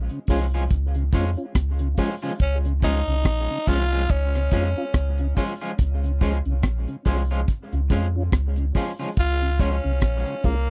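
A dry, close recording in a 1970s studio style, with little reverb, frames this laid-back, hazy dub reggae passage, cut from a longer piece at 71 BPM in 4/4 with a swung sixteenth-note feel in D-flat major. Up front, a deep reggae drum kit with a tight kick, rim click and hi-hat sounds dark and smooth, its top end rolled off, while a soft, round sub bass with a fast attack and sustained notes sits low beneath it, thickened by transformer saturation. A mellow tonewheel organ, clean and shaded by chorus vibrato and a slow rotary speaker, is thinned by a high-pass filter and trails off into dub echo. An electric guitar at the edge of break-up adds twangy picked accompaniment through tremolo, high-pass filtering and dub echo. From 2.4 seconds a raspy, growling tenor saxophone takes the melody with light vibrato and a bright, gritty edge, its phrases also repeating in dub echo.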